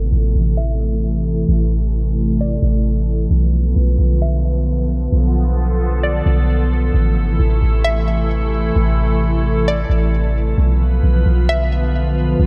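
A deep, boomy 808-style bass anchors this hazy, spacious cloud-rap excerpt, its dark sine tone carrying a faint noise layer with a fast attack that decays low in the register. The track moves at 132 BPM in 4/4 with a half-time feel, in A minor, cycling between Am and Bdim chords. A glassy FM pad sits up front with sustained chords, its ethereal, warbling vintage tone softened by a slow attack, long release, ensemble chorus and its own reverb. From 0.6 seconds a hollow, bouncy square-wave pluck plays a high, detuned melody under chorus and delay, bright yet set quietly back in the mix until it stops at 11.9 seconds. A filter sweep runs through the opening section before the music shifts into its second section at 6.9 seconds, and the whole mix carries a light reverb and a low-pass filter that adds to the dreamy haze.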